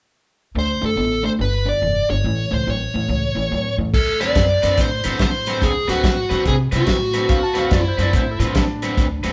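A loping swung shuffle in four drives this short electric blues cut, soulful and gritty in mood. A woody pizzicato upright bass and a bright, crunchy overdriven guitar riff open the piece, while a dark, smooth overdriven lead guitar sits up front carrying the melody. The drum kit arrives at 3.9 seconds, dry and muffled with dark cymbals, a tight kick and a rolled-off top that give it a lo-fi soul character. At 7.3 seconds a clean, twangy lap steel guitar joins with a slide second line and volume swells. The band sounds as if it is playing live together in one room, wrapped in a moderate stone-room reverb.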